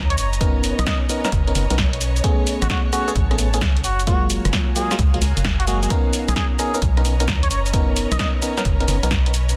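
UK garage in a bouncy, sunny two-step groove at 131 BPM with 16th-note swing in B lydian, where an electronic kick joins a punchy analog drum machine with hi-hat, rim click, shaker and snare over a hollow, organ-like FM bass, glassy bell-like FM electric piano stabs with chorus and delay, and a brilliant plunger-muted trumpet melody with wah-wah, vibrato and delay, all set against background strings: sustained chords from a clear violin section carrying 12-bit sampler grit and a dark, woody sul tasto ensemble texture, both pumping under sidechain through a dense, heavily limited, dry mix.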